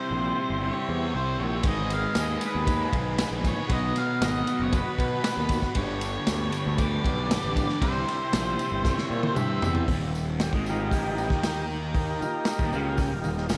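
A straight 4/4 groove drives this kaleidoscopic, hypnotic stretch of psychedelic rock, cut from a longer piece, with a crunchy breakbeat drum kit entering at 1.6 seconds, its punchy kick, gritty saturated tone and rolled-off top sitting up front, joined almost at once by a jingly tambourine tucked in the background. From the start, a double-tracked fuzz guitar plays a bright, compressed riff through a phaser, while a fuzz picked electric bass adds a round, overdriven low end. An overdriven combo organ holds sustained chords with a buzzy, heavily vibrato-laden vintage sound, and a dark octave-fuzz lead guitar carries the melody through tape echo until 9.7 seconds. The chords move from C through Abm, B and Gadd9 back to C, and a drum fill at 8.9 seconds leads into a shift to Eb, where a transistor combo organ takes a solo at 9.9 seconds. A lush hall reverb soaks the whole mix in a dreamy haze.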